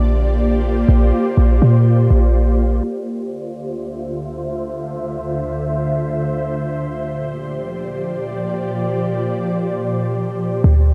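Ethereal and hazy, this atmospheric cloud-rap fragment from a longer hip hop piece drifts in free time. An airy, full-bodied pad holds sustained chords throughout its roughly 10.9 seconds, its detuned sawtooth-and-triangle unison softened by ensemble chorus, built-in reverb and a low-pass filter into a mellow, wave-folded glow. A deep, boomy 808-style bass with a clean sine tone sits up front beneath it from the start, its fast attack decaying into darkness before it drops out at 2.8 seconds. From there the pad carries on alone under a filter sweep as the harmony moves from Bb69 to Dm9 and back, and the bass returns briefly at 10.6 seconds. The sound is dry and gritty, as if captured on hardware, with little room around it.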